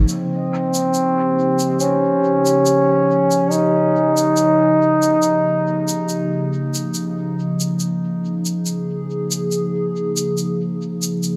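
Ambient dub at 70 BPM in 4/4, this meditative, hazy excerpt rests on a warbling, detuned tape-like pad with a nostalgic, lo-fi character, holding sustained chords that move from Eb7 to Bbm7 at 6.9 s. A warm, classical-style solo trombone carries the melody up front through dub echo until 6.5 s, while a distant, roomy shaker played with brushes sits low in the echo-heavy mix, trailing its own dub echo. A moderate plate reverb of 2.6 s hangs over the mix.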